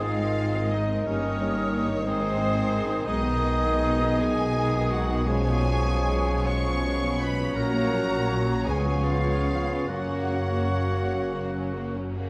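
A lyrical, serene orchestral passage in 6/8 with rubato opens with a clear violin section carrying the melody over lush bowed strings: a second, richer violin line sits very quiet beneath, a woody viola section fills the accompaniment, and a cello section and an up-front double bass section anchor the bass. Around them, a pure, expressive concert flute, a distant oboe, a solo clarinet and a soft-attack bassoon add supporting lines in the background, while a mellow French horn section and a very quiet trombone section hold sustained chords and a dark trumpet section adds stabs. The warm production sits in moderate scoring-stage reverb, in a brief cut of about 12 seconds from a longer piece.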